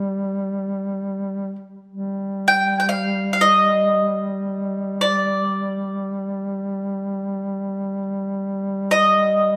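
A moderate scoring-stage reverb, with a decay of about 1.6 seconds, gives this short cut from a longer piece a solemn, spacious air. It is a mournful Caucasian folk lament in free time, tuned to A4 = 439 Hz. Up front, a bowl-back mandolin carries the melody between G4 and G5, its picked double strings sounding acoustic and warm. Also up front, a mellow duduk holds a low drone on G3 from the first moment to the close at 9.6 seconds, with vibrato, scooped notes and a smooth top in a folk style. The opening phrase runs to 1.9 seconds and then returns, and the two parts sound together throughout.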